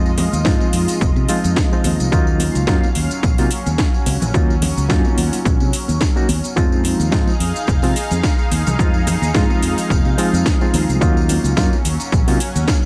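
Groovy and sensual, this nu-disco excerpt moves at 108 BPM in Eb dorian with a lightly swung sixteenth feel, cycling between Fm7 and Ebm9. A barky, reedy electric piano with overdrive, fast tremolo, delay and sidechain pumping carries the accompaniment over a lush, detuned sawtooth pad treated with chorus, phaser and pumping, while a fingered electric bass holds the low end. An overdriven house kit with cracking snare, metallic hats and cabasa sets the drums in motion, soon joined by an up-front, punchy, overdriven electronic kick, plus bright, hard-hand tambourine and congas, in a dry mix.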